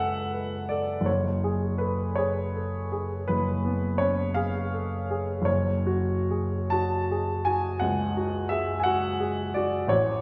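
A clear, woody upright piano, slightly detuned and with a long sustain, plays alone as a melancholic, wistful romantic nocturne in 12/8 with free rubato, ranging from deep bass notes up into the upper treble. The harmony rests on a minor chord, moves to a dominant seventh over the same bass at 1.1 seconds and returns home at 5.5 seconds, in a brief cut from a longer piece. The piano sits present and up front, while a wet recital hall reverb and a listening spot further back in the room give the sound a soft, rounded top end.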